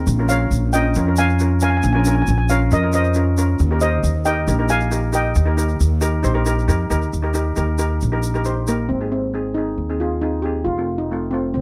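Bouncy and carefree, this calypso excerpt at 136 BPM is led by a steel pan melody struck with hard rubber sticks, its shimmering tone set up front in a boxy small room, while a second steel pan played with soft rubber sticks supplies mellow, mid-forward accompaniment. Beneath them, a woody, thumpy upright bass with gut strings sits up front, and a grainy egg shaker adds a bright edge until 8.8 seconds. The dry, close studio sound recalls the 1970s as the chords move from Bbm7 to Eb and, at 8.9 seconds, on to Ab and then F.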